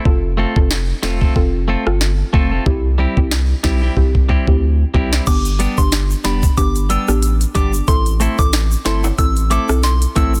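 Hypnotic and sultry, this dancehall excerpt at 92 BPM pairs a bright, twangy clean electric guitar arpeggio and a soft, detuned pluck with chorus over a deep, round analog bass and a knocking, up-front afro-pop drum kit with sharp snare and smooth hats, rolling through F, C, G and Am with a drum fill at 4.0 seconds before a warbling FM synth bell melody with chorus and digital delay, along with dry, ringing egg shaker and timbales in the background, arrives at 5.3 seconds in a dense, heavily limited mix.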